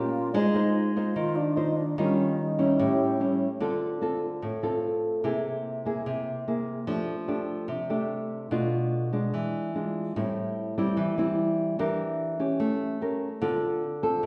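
An airy, close-miked alto flute with vibrato opens this wistful, smooth bossa nova excerpt at 147 BPM in 4/4, its tongued second line floating over a thumb-plucked nylon-string guitar. The flute drops out at 3.4 s, leaving the small, up-front guitar to carry the accompaniment alone until 14.3 s as the music settles into D minor, moving through chords such as Bm7b5, E7b9 and A7b9 before returning to Dm7. A reverberant recital-hall ambience surrounds the playing.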